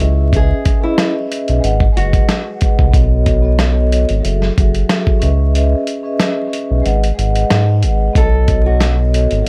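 Over a lightly swung boom-bap groove from a gritty, compressed sampler-style kit with a thumpy kick (which drops out from 5.5 to 8.2 seconds), this moody, tough hip-hop excerpt pairs a deep, round analog bass with a mellow, band-limited vibraphone that rings through cassette-tape haze on slow motor vibrato, while a small fingerpicked nylon-string guitar with tape echo sings the melody at the start and returns briefly at 8.2 seconds, all in a dry hardware recording dusted with vinyl crackle.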